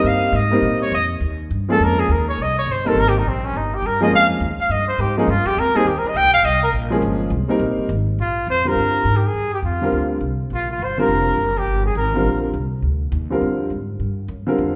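A mellow, softly attacked trumpet carries the melody in a cool, intense jazz excerpt at a brisk 207 BPM swing, soloing until 8.2 seconds as the music shifts from C phrygian to G phrygian over a baby grand piano with a natural, warm tone and a woody, thumpy pizzicato upright bass, all set in the roomy reverb of a recital hall, with the trumpet falling away at 12.4 seconds.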